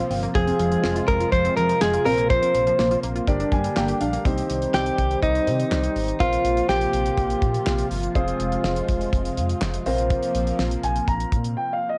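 A clean, direct-recorded electric guitar sits up front with a compressed, picked melody that drifts slightly in pitch from 0.3 to 7.9 seconds, giving this cool, nocturnal synth-pop excerpt a woozy edge. Beneath it, a deep-toned grand piano plays accompaniment and fills, a bold, brassy analog pad holds chorused chords, a dusty, detuned pluck warbles through arpeggios until 4.2 seconds, and a dark, smooth synth bass glides between notes. A dry 70s drum kit with a fat snare, tight kick, hi-hat and handclaps drives the straight groove. Every part except the bass is dressed in cassette tape coloring, and a moderate spring reverb lends the whole a homemade, late-night character.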